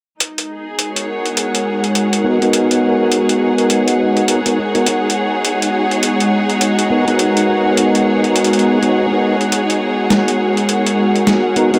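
A playful, gritty glitch hop excerpt at 103 BPM in G# minor, swinging on sixteenths over a single G#m9 chord, with an up-front, overdriven boom bap sampler kit of hi-hat and medium-tuned snare that sounds compressed and re-recorded in a small room, alongside a dark, woody string section bowing lush, vibrato-laden texture from 0.2 seconds. A warbling, nostalgic, lo-fi pad of detuned square, triangle and sawtooth tones holds slow-attack chords through chorus, phaser and its own reverb from 0.9 seconds. At 2.2 seconds a fat, percussive tonewheel organ adds stabs with key click, third harmonic percussion, slow rotary speaker, low-pass filter and tape echo, all set in a moderate plate reverb within an echo-heavy mix.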